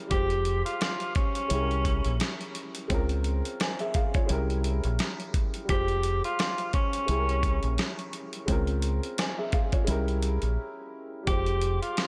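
A breathy, whispered tenor saxophone with vibrato carries the melody over a worn, slightly detuned upright piano, a round, punchy fingered electric bass and a gritty sampler-style drum kit with a thumpy kick, in a dark boom-bap hip-hop excerpt at 86 BPM in F harmonic minor. Its swung groove cycles through Fmadd9, C7b9b13 and Bbm9/Db chords under light digital ambience, with a brief break at 10.6 seconds.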